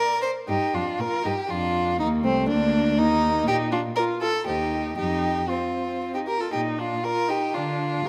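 Lively and cheerful, this quick classical-period movement for string quartet moves in 3/4 at 119 BPM with a rubato feel in Bb major. A very quiet first violin sings the expressive melody with vibrato and portamento, while a clear, up-front second violin holds a smooth, even second line, the viola adds focused accompaniment and the cello enters on the bass at 0.5 s. All four players bow with vibrato inside a moderate scoring-stage reverb, and the passage is cut from a longer piece.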